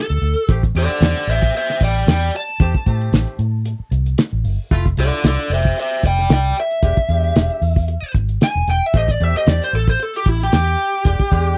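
A dry, close 1970s-style studio sound with little reverb frames this soulful, smoky straight-eighth soul blues in A minor at 114 BPM, cut from a longer piece. A dark, overdriven lead guitar through a small cranked amp plays a picked solo throughout, up front over a round, foam-muted fingered electric bass and a cloth-damped, lo-fi drum kit with a fat snare, tight kick, hi-hat and a gritty, muffled top. From 0.5 seconds a distant, roomy jazz-style horn section holds sustained chords beneath, moving through Am7, Fmaj7 and E7#9.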